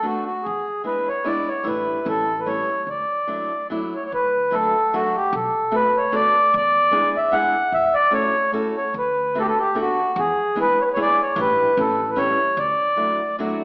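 Whirling and nostalgic, this short excerpt of a musette waltz in D major sways at 149 BPM in 3/4 with a lightly swung, rubato feel, as a mellow, reedy accordion carries the melody up front over a dark, fingerpicked steel-string acoustic guitar and a woody, thumpy pizzicato upright bass that enters at 0.5 seconds, all set in a wet recital-hall reverb with an AM radio sound.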